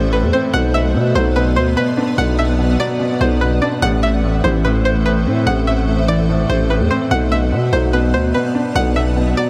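Soaked in a huge, dreamy reverb, this menacing, hard-hitting half-time hip hop fragment pairs a growling, buzzy 808-style bass up front with a twangy, nasal resonator pluck that carries the melody through chorus and analog delay, while a felt-muted upright piano adds soft, intimate accompaniment with audible action noise and a granular cloud pad holds blurred, evolving chords over a shift between Am and Bm.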